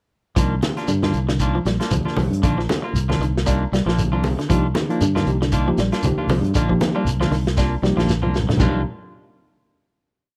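A short, intense and hypnotic afrobeat piece in C minor at 117 BPM opens at 0.4 seconds on a Cm11 groove, with a gritty, saturated breakbeat kit with a punchy kick and dark cymbals, a round, up-front fingered bass riff, low-tuned congas in the background, a grainy shekere, a twangy, slightly broken-up guitar ostinato, and bright, hollow-body stabs from a semi-hollow electric guitar. A clean tine electric piano joins at 4.5 seconds with syncopated quartal chord stabs, and a drum fill leads into a final chord that rings from 8.6 seconds. The sound is dry and close, in the manner of a 1970s studio.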